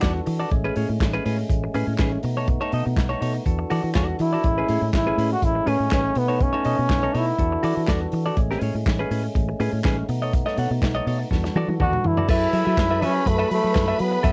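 Danceable and glamorous, this disco excerpt moves at 122 BPM in a straight 4/4 in A major, cycling through extended chords such as Amaj9 and B9 before shifting to F#m11 at 12.3 seconds. A vintage drum kit sits up front with a muffled, rolled-off top, dark cymbals, a tight kick, handclaps and a drum fill from 11.3 to 12.3 seconds. It is joined throughout by a round, foam-muted fingered electric bass and a compressed, picked clean electric guitar playing accompaniment. A fat, lightly overdriven tonewheel organ with third-harmonic percussion and a stopped rotary speaker holds sustained chords in the background. A clear, vintage-toned trombone carries the melody up front in two phrases, first from 4.2 seconds and again near the end, while a distant studio string section with vibrato and portamento adds a bowed second line in the closing seconds. The excerpt has the lo-fi character of a home recording on cassette, with light reverb and tape colour on the drums, guitar, organ and strings.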